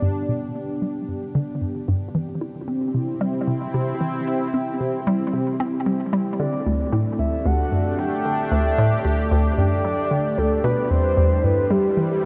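A hollow, bouncy square-wave pluck drives this luminous, expansive piece of sequencer-driven space music at 113 BPM in a straight 4/4, its warbling vintage riff carried by chorus and tape echo while a filter sweep runs across the synth arpeggio sound throughout. Alongside it, a sweeping resonant pad of detuned sawtooth with a sine sub octave holds evolving, full-bodied sustained chords through G, C, Dsus4 and Em. At 6.4 seconds, a soft, round, octave-layered lead enters with a dark, vibrato-touched melody treated with chorus, phaser and tape echo, all set in a huge ambient reverb with a cassette-tape character in this short cut from a longer piece.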